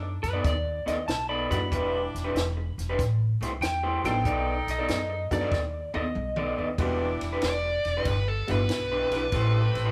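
A lo-fi, slightly broken-up electric guitar riff opens this smoky, brooding electric blues shuffle in E minor at 94 BPM, joined from the start by woody pizzicato upright bass and loose, lightly vibrato horn stabs, with a compact cocktail kit adding dark cymbals and a punchy kick. A compressed fingerpicked slide guitar carries a solo until 6.8 seconds over a jangly, metallic tack piano, and a drum fill leads into a dark, overdriven lead guitar melody that enters up front at 7.4 seconds. The band sounds live in one room with moderate large studio reverb, and this excerpt is cut from a longer piece.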